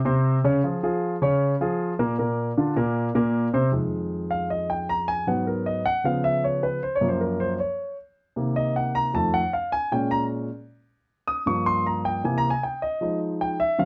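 Driving and fiery, this short jazz passage from a longer piece features a dark, mellow grand piano played alone and placed up front, heard from 0.1 to 13.8 seconds in a moderate studio room. After a brief opening built around Bbm7 and Bbsus2, the piano launches into a solo at 3.7 seconds. The solo runs through colorful harmony such as Db7#9, Gbmaj7 and F7b9 before settling on Fm7.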